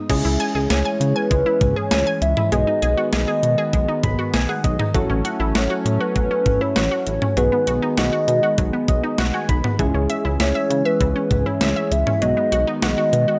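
This synth-pop excerpt has a driving, nocturnal mood, moving in a straight 4/4 over a looping progression that settles on C# minor and drifts through B6 and A6. A clean 12-bit digital drum machine sits up front with a thumpy kick, a medium-tuned snare, hi-hat, toms and crash cymbal, all given an overdriven edge. A dark, glossy chorused synth bass, built from pulse and sawtooth waves with a plucky filter, shares that forward position. A hollow, woody clarinet-like synth lead enters at 0.7 seconds, warbling with vibrato and tape echo in a narrow range. Around it, a juicy, squelchy resonant blip pluck spins arpeggios through tape echo, round electric-piano-like keys add gentle chorused accompaniment with fills at 3.7 and 8.6 seconds, and a shimmering pulse-width pad holds sustained chords in the background. Light reverb and digital ambience frame the whole sound with a late-night sheen.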